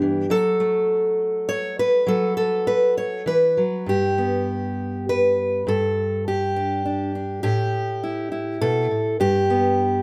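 Warm and pastoral, this 10-second folk fragment for solo fingerpicked steel-string acoustic guitar drifts in rubato 3/4 around 102 BPM in G lydian, tuned to A4 = 439 Hz, its bright, fresh-stringed tone sitting up front with audible finger squeak as it moves through F#m, G and A5 before returning to G at 9.2 seconds, all wrapped in a moderate large-studio reverb.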